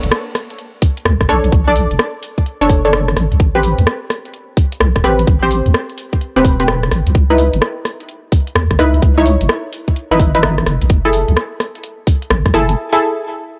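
A swung two-step garage groove in 4/4 drives this moody, late-night UK garage passage, cut from a longer piece, with a garage drum kit of warm hi-hats and rim clicks running from the start and a tight electronic kick joining at 0.8 s. Underneath, a deep, dark wobble bass built from triangle and sine tones sits up front, saturated and compressed, with a sustained, chorused body. Over it, punchy sawtooth chord stabs with detuned, wave-folded edges and a bright filter pluck move through Bm9, Am9, C#m9 and F#m9, colored by chorus and tape echo. The drums and kick are layered and produced, then re-recorded in a small room, and a digital ambience surrounds the whole mix. At 12.8 s the groove drops into a short break, leaving the echoing stabs alone until 13.6 s.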